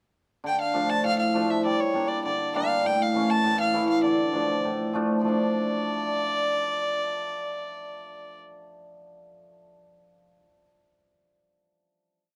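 A reedy, gut-string violin with light vibrato carries an ornamented modal melody in period style over a hammered, shimmering cimbalom playing off-beat triad chords with a slapback echo, in a short, bittersweet yet festive klezmer piece in D minor at 100 BPM in a straight 2/4, recorded dry and up front outdoors, moving through Dm, Gm and A5 before settling on a final chord at 5.2 seconds, with the cimbalom ringing on until 10.3 seconds.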